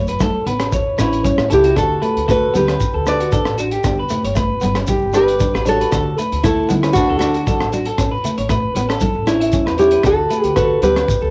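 A lo-fi home cassette recording with light reverb and lossy artefacts frames this joyful, sunny highlife guitar band excerpt in D major at 116 BPM, cut from a longer piece. A bright, fingerpicked nylon-string guitar carries the melody up front with plate reverb from 1.0 seconds, over twangy, picked electric guitar arpeggios through a small old amp with analog delay, a slightly broken-up rhythm guitar in the background, and a woody pizzicato upright bass. A dark, saturated breakbeat kit with a punchy kick, hi-hat and rim click drives the groove alongside a grainy shekere and ringing, soft-handed congas, as the chords move from Aadd9 through D and G.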